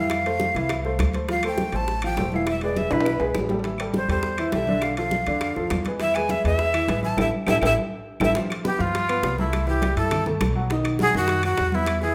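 Fiery and driving, this fast salsa excerpt in A minor races along at 204 BPM, with a breathy, bright jazz flute up front carrying the melody with vibrato and a crisp, chiffy attack over a clear, present baby grand piano and a dark, thumpy pizzicato upright bass with gut strings. Congas with a thick, damped skin, tight high-tuned bongos, ringing metal-shell timbales and saturated claves sit in the background. A drum fill arrives at 2.9 seconds, and a band accent at 7.2 seconds leads into a new section at 8.4 seconds, all set in a large, wet studio reverb.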